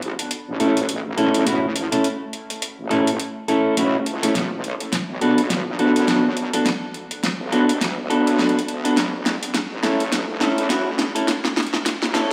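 Gritty and playful, this glitch hop build-up swings its sixteenths as a fat-snared, metallic-hatted electronic pop drum kit sits up front in studio reverb, and from 4.4 seconds a drum fill carries through to the end. Beneath it, a heavy, detuned sawtooth wobble bass with chorus and a high-pass filter wobbles in the low register, while a dark, picked clean electric guitar enters at 0.6 seconds with stabs roughened by 12-bit sampler grit and trailed by dub echo. The harmony moves from A to Bm7 and back to A at 9.0 seconds, all set in a lush hall reverb.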